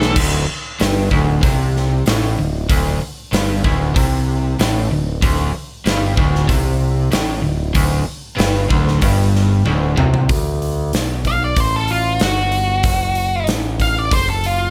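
This excerpt is blues rock in the power-trio mold, with a southern rock edge, at 95 BPM in a straight 4/4 and set in D mixolydian, raunchy and driving from the first beat. A huge arena drum kit opens with a fill and plays throughout, its punchy kick, medium-tuned snare, toms, hi-hat and bright crash cymbals sounding up front in a big room. An overdriven electric guitar, double-tracked and compressed, carries a picked riff in the low register built on a D5 chord until 10.3 seconds, where a second drum fill closes the opening section. A growling picked bass, round and overdriven, holds the bottom end under everything from start to finish. At 10.3 seconds the harmony moves to D, and at 11.3 seconds the octave-fuzz lead guitar steps forward with a distorted, up-front solo that runs until the cut at 14.7 seconds, all wrapped in light reverb.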